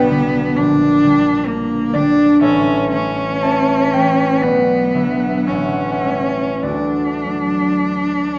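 Flexible rubato phrasing in 4/4 shapes this serene, romantic classical fragment for cello and concert harp, both sitting up front for its full 8.4 seconds. One bowed cello carries the melody with a clear, focused tone and vibrato, while the fingerpicked harp rings out a warm acoustic accompaniment across a broad range, its harmony moving from G/B through A and Bm to A7 and a closing D. A wet recital hall reverb surrounds the pair in a dark production.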